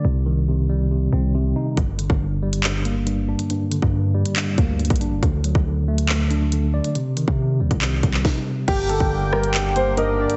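A mellow tine electric piano and a deep, sine-toned 808-style bass open this dark, tense drill hip hop cut at 139 BPM in a half-time feel, moving through G harmonic minor chords. At 1.8 seconds an up-front electronic drill kit enters with a hard-clipped kick, sharp snare, crisp hats, handclaps, rim clicks and crash, and after a brief stop the music returns at 8.7 seconds with a dark, intimate grand piano melody carrying audible action noise, a velvety detuned synth lead with chorus, vibrato and digital delay, and reedy, breathing harmonium chords. Everything sits in light reverb behind a heavily compressed, radio-like sound with dulled highs.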